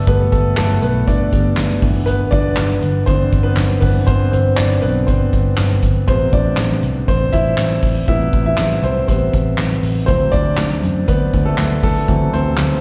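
Heard through a venue's PA at a live gig, this cut from a longer piece sits in a small-room reverb with a recital-hall glow around it. It is piano-driven pop at 120 BPM in a straight 4/4, set in D mixolydian, and its mood is anthemic and hopeful. A clear, intimate grand piano sits up front and carries a solo across the full 12.8 seconds, ranging from C3 to E5 with its action noise audible in the natural tone. Beneath it, a vintage muted picked electric bass gives a dark, round, foam-muted, amped foundation between G1 and F#2. A soft-mallet drum kit enters at 0.1 seconds with handclaps, hi-hat, a punchy kick and a medium-tuned snare, sounding acoustic and roomy, as if set at a distance in a studio room. The harmony moves from Gadd9 to Cmaj7/G, then to Am7, and arrives on D7 at 10.1 seconds.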